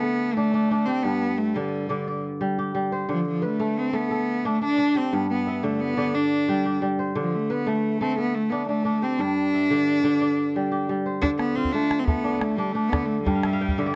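Close, detailed microphones and light reverb give this short cut from a longer West African traditional piece an intimate, present sound. Set in D dorian with tuning at A4 = 435 Hz, it moves at 118 BPM counted in dotted quarters, in a straight 12/8 that feels reflective and hypnotic. A kora carries the arpeggios throughout, fingerpicked and ringing with a crisp, up-front tone across a range from G2 to G5. Over it, a single bowed cello sings the melody between F3 and D4, its smooth, even line coloured by vibrato and a rich, close presence. At 11.2 seconds the music moves into a second section and a small, acoustic calabash joins in close up, while the kora adds a brief fill at 13.3 seconds before the passage breaks off.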